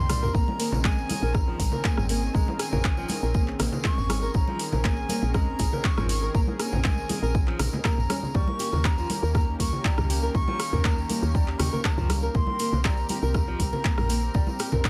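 A dry, close-sounding afro house excerpt at 120 BPM in Bb dorian, hypnotic and warm, opens with a brief drum fill before the up-front deep electronic kick lands at 0.3 seconds under a deep house kit of metallic hats, handclaps, rim click and toms, soft-handed saturated congas, and a distant jingly tambourine, while a woody, round FM bass and thumb-plucked flamenco guitar arpeggios with tape echo pump against the kick, a detuned sawtooth pad with chorus and tremolo sustains Bbm11, Eb7 and Cm7 chords, and a breathy, unsteady straight-tone concert flute carries the tongued melody through its own tape echo.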